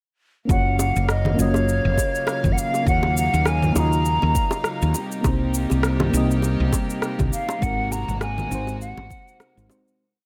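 Warm and relaxed, this short sunset chillout piece moves at 101 BPM in 4/4 with a gentle sixteenth-note swing, set in G-flat Lydian. A hollow, pure concert flute carries the motif-based melody up front, its call phrases tongued with vibrato and trailed by digital delay. Beneath it, a mellow FM electric piano plays held chords with syncopated pushes, its round, full-bodied tone colored by chorus, tremolo and delay, while a clear studio string section floats a soft-attack sustained pad. A woody, punchy fretless bass sits up front with a dotted rhythm, anchoring a light lounge beat of deep, soft electronic kick, shaker, rim click and congas, joined by close, dry, low-tuned bongos. The chords move from Gbmaj7 through Ebm9 and Cm7 to Ab9 under light reverb, and the whole groove begins fading at 6.8 seconds until it ends at 10.0 seconds.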